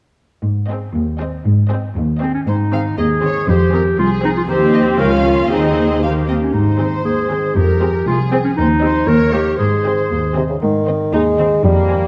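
A muted cello section opens this playful, quirky cinematic cue at 0.4 s, its veiled, bowed bass sitting up front at a straight 118 BPM in 2/4, in Ab major. Muted violins and violas join almost at once. One violin section carries a lush melody in the background, a second violin section plays a softer-edged second line, and the violas fill in the accompaniment, all of these strings con sordino with vibrato. A clear, vintage-sounding clarinet enters at 2.2 s with a solo second line up front, and a concert harp soon adds ringing, fingerpicked arpeggios in the background. The harmony moves through Ab, Fm, Cm/Eb and Eb before settling back on Ab, and a mellow bassoon takes up solo accompaniment near the end at 10.4 s. Moderate scoring-stage reverb and a dark production give the strings a shadowed cast, and the passage is cut from a longer piece.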